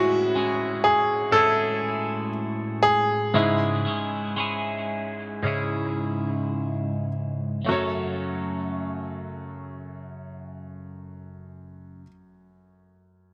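This emotional, longing pop fragment, cut from a longer piece, moves at a slow, straight 4/4 pace and gradually slows over its first 7.7 seconds. A bright grand piano carries the accompaniment and features as the soloist through that opening stretch, its brilliant, polished tone sitting up front with a short sustain. A twelve-string electric guitar plays arpeggios with a clean, twangy, picked sound. Its compressed tone is colored by a phaser and a digital delay, and it sits a little lower in the mix than the piano. The harmony moves from Amaj7 to C#m/G#, then settles on F#m as a second section begins at 7.7 seconds. The guitar stops at 12.1 seconds and the piano at 13.3, both in a light reverb.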